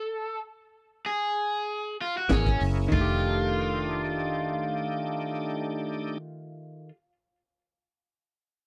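Rollicking and laid-back, this short soul blues cut from a longer piece moves at 96 BPM in F mixolydian with a lightly swung straight-eighth feel, opening with an overdriven, bright garage guitar melody playing alone through a stop until the band enters at 2.3 seconds on a Gb9 chord that gives way to F13. A shouting tonewheel organ with key click, chorus vibrato and slow rotary speaker supplies accompaniment, a compressed, direct-recorded clean guitar adds phaser-tinted stabs, and a round, foam-muted fingered bass holds the low end. A saturated, gritty breakbeat kit with punchy kick, high-tuned snare and dark cymbals plays only briefly, stopping at 3.1 seconds, all captured in a dry, close 1970s-style studio sound.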